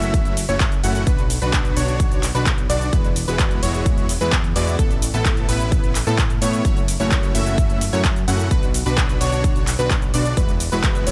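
Euphoric and anthemic, this 11-second cut from a longer festival progressive house track drives at 129 BPM in a straight 4/4, tuned to A4 = 443 Hz, cycling through F#m7, Bm, Eadd9 and Asus2. A huge, detuned supersaw riff with cassette-tape grit and a catchy plucky unison lead playing arpeggios both pump under sidechain and trail dub echoes, while a fat, filter-swept analog bass holds the low end. A punchy, tape-warm electronic kick sits up front over an overdriven big-room kit of handclaps, metallic hi-hats, ride cymbal and shaker, all in a dry mix.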